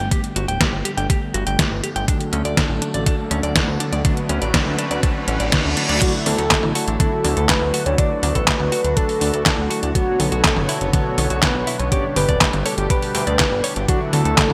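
A straight 4/4 groove from an overdriven, thumpy electronic kick and a detuned 8-bit drum machine, with its up-front snare, handclaps, hi-hat, toms and crash in gated reverb, drives this playful, romantic italo disco excerpt. Underneath sit a glossy chorused synth bass, a smooth analog pad with a filter sweep, dark synth brass stabs, and clean, compressed electric guitar arpeggios through delay and shimmer reverb. A very quiet riser and reverse cymbal build up to 6.0 s, where a round, octave-layered synth lead takes the melody with vibrato and chorus, all set in a moderate plate reverb with bright 1980s-style digital production.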